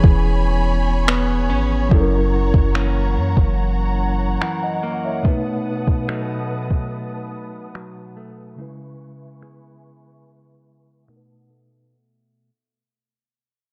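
A dark, dry production under a low-pass filter, with a filter sweep and fade-out running across this dreamy, smooth contemporary R&B fragment at 72 BPM in 4/4. An electronic drum kit of finger snaps and a soft, tape-tinged kick sits up front, as does a deep, sine-toned 808-style bass that stops at 4.4 s, while a mellow tine electric piano, a bright, compressed clean guitar playing picked arpeggios through digital delay, and a lush bowed string section with vibrato and sidechain pumping carry the harmony. The chords move from E6 through F#7 and B7 to C#m7 before returning to B7 at 11.1 s.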